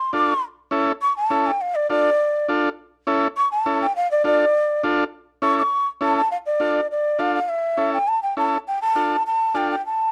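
A dry, close recording in a 1970s studio style, touched with light reverb, puts both players up front in this fiery, danceable Latin piece, cut from a longer performance. The tempo is a brisk 204 BPM in a straight 4/4, set in D harmonic minor with tuning at A4 = 444 Hz. A breathy, bright bamboo bansuri carries the melody between D5 and D6, its tongued notes, vibrato and unsteady delivery giving the line a lively, airy edge with lifted highs, and it takes a solo from the start until 6.3 seconds. Beneath it, a vintage combo organ with a buzzy, clean tone and light vibrato supplies accompaniment in the range C#4 to A4. The harmony swings back and forth between A and Dm throughout, and a new section begins at 6.3 seconds, with the organ dropping out at 9.8 seconds just before the bansuri closes at 10.1 seconds.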